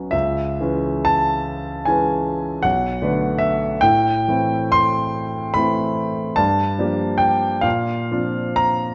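Hazy and luminous, this brief impressionist excerpt for solo concert grand piano drifts in a rubato 9/8, its chords sliding from C#m7 through Bm7, Am7 and Gm7 before settling on Bbadd9 at 7.6 seconds. The piano sits up front and intimate, spanning B1 to C6 with deep bass, long sustain and audible action noise. A moderate scoring-stage reverb adds a soft halo around the instrument.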